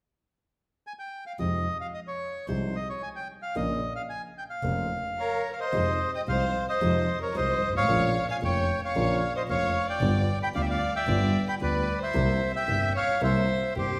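Bathed in the lush reverb of a recital hall, this dramatic, sultry tango excerpt in F minor moves at 112 BPM with a rubato feel: a reedy bandoneon carries the melody up front from 0.9 seconds, a mellow, dark grand piano with deep bass and long sustain joins at 1.4 seconds alongside a softly bowed, airy double bass played sul tasto in the background, and a solo violin with expressive vibrato and portamento adds a second line from 5.2 seconds as the chords move from Fm7 and Bbm to G7 and C7.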